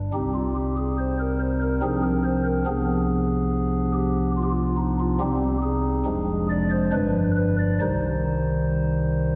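A soft, hollow stopped-flute pipe organ with a distinct chiff plays alone and up front through this solemn, grave chorale-style classical excerpt in 3/4, its mellow baroque voicing ranging from F1 to D5 and settling back onto its home minor chord near 7.8 seconds, all within a dark production and the long wet reverb of a concert hall.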